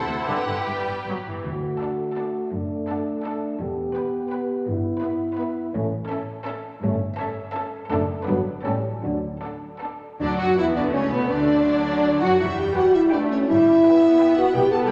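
Cheerful and lively, this quick classical-period movement for symphony orchestra in D major moves in 3/4 at 149-174 BPM with a rubato feel, its focused, vibrato-rich violins carrying the melody over a more distant second violin line, smooth, even violas, and cellos and double basses anchoring the bass, the cellos sitting in the background. At 1.4 seconds a dark, soft-attacked French horn section enters up front with sustained chords, while round, calf-headed timpani struck with soft mallets sound briefly in the background around 1.5 and 5.7 seconds. The whole orchestra sits in a wet scoring-stage reverb, in a short cut from a longer piece.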